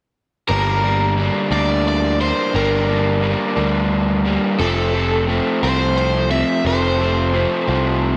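A slow, straight 6/8 pulse at 58 dotted-quarter beats per minute carries this restless, bittersweet rock fragment in G minor, cut from a longer piece, moving from G minor to F at 4.6 seconds. Up front, a crunchy, double-tracked overdriven guitar plays the riff, while a punchy, direct electric bass holds the low end. Above them, an overdriven semi-hollow guitar with a hollow-body tone and slapback echo carries the melody, all set in a moderate plate reverb until the parts end around 8.2 seconds.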